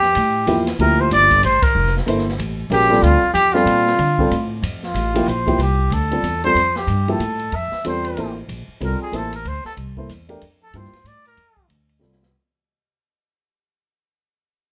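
Searching and spiritual, this modal jazz excerpt in F major swings in 3/4 at a brisk 187 BPM, with a mellow, roomy trumpet carrying the melody up front over woody pizzicato upright bass, an open jazz drum kit with dark cymbals and a boomy kick, and a dark upright piano with short sustain entering at 0.5 seconds on Fmaj9 and Bbmaj9 chords. A band accent lands at 1.6 seconds, and from 4.6 seconds the trumpet takes a solo as the music fades out, closing with a brief drum fill at 12.0 seconds. Light reverb lends the small-room sound a gentle depth.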